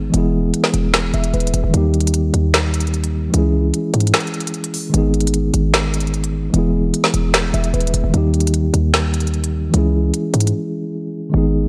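Eerie and melancholic, this half-time trap and hip hop cut, taken from a longer piece, drifts over a looping progression of E, D#, C#m and G#m. A mellow tine electric piano carries the harmony up front, its clean, warm tone coloured by its built-in speakers, and it slips in a short fill between 0.9 and 1.7 seconds. Beneath it, a hard-hitting 808-style bass delivers heavy, punchy sine tones with a fast attack, a decaying tail and a noise layer on top. The electronic trap kit pairs finger snaps with crisp hi-hats and a woody snare, all sitting close and produced, before the drums drop out at 10.5 seconds. The mix stays dry and intimate, with the piano and bass ringing on to the end of the clip.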